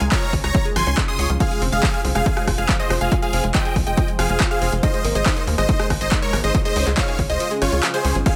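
Uplifting trance at 140 BPM in a straight 4/4, this short cut from a longer piece carries an emotional, bittersweet mood over chords moving from Db to Fm, then Abadd9 and back to Db. A huge, euphoric supersaw lead carries the melody with detuned unison saws, phaser and dub echo, while a lush, detuned unison pluck adds a bright second line in the background, colored by cassette tape. Underneath, a tight, nasal sequencer bass drives forward with a filter-plucked sawtooth and square tone, and a tight sequenced synth spins arpeggios through chorus, phaser and dub echo. A shimmering, ethereal pad with an octave-up shimmer and granular texture holds dark sustained chords far back in the mix, and sidechain pumping breathes through the melodic parts. An overdriven, punchy electronic kick sits up front beside an analog drum machine playing crash, handclaps, hi-hat and rim click, both re-recorded in a large room, and the kick drops out from 7.4 seconds.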